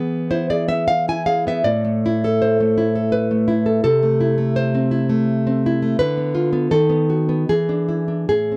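A dry, close studio sound in a 1970s style puts a single nylon-string guitar up front, its full-bodied, deep classical tone fingerpicked across a range from A2 to G#5. This short, intimate and melancholic excerpt of a romantic solo piece sits in A minor and 3/4, moving with a rubato feel at roughly 69-86 BPM. The harmony opens on E, settles on A minor at 1.7 seconds, and leans through diminished and dominant colours before arriving on E7 at 7.5 seconds.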